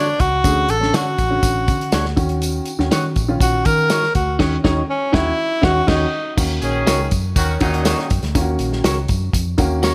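Joyful and danceable, this uptempo 1960s-style soul groove moves at 121 BPM in a straight 4/4, cut from a longer piece. A breathy tenor saxophone leads the melody up front from the start, intimate and whispered with a soft attack, light vibrato and a slapback echo, while the band hits an accent at 4.4 seconds before the solo ends at 6.4 seconds. Beneath it, a bright, twangy clean electric guitar plays compressed, picked stabs, and a dark, round, foam-muted fingered bass anchors the low end. A woody, worn, slightly detuned upright piano fills in the accompaniment, while a small-room soul drum kit with a tight kick, medium-tuned snare and dark cymbals drives the beat, joined by a jingly tambourine sitting in the background. At 6.6 seconds a clear, tight vintage horn section takes a brief second line, all within a light reverb and small-room ambience over Dmaj7 and D#m7 harmony.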